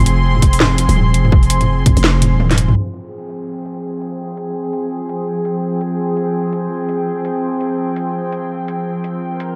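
Half-time drum and bass in F minor at 167 BPM, dark and cinematic, this excerpt opens on a drop where a growling, buzzy 808-style bass and a hard-clipped electronic kick hit under a distant, reedy string section holding bowed chords with sidechain pumping, while a layered kit with cracking snare and metallic hats moves into a fill at 2.4 seconds before the bass falls away at 2.8 seconds, leaving strings, drums, a very quiet downlifter and a filter sweep over an Fmadd9 chord in light digital reverb.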